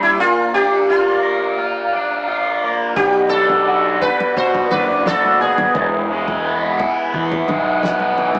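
A buzzing, shimmering sitar melody opens this hypnotic, kaleidoscopic psychedelic rock fragment at 86 BPM, over a raw, double-tracked garage guitar riff with overdrive and phaser and a mellow, flute-like tonewheel organ holding chords through a fast rotary speaker in the background; a round, punchy fuzz bass and a dry, dark, cloth-damped drum kit with a fat snare enter at 3.0 seconds, and soft-handed, thin-skinned congas join at 4.0 seconds, as the harmony moves through Bb, Bm7 and E in a rough rehearsal-room recording with a small-speaker sound and moderate reverb.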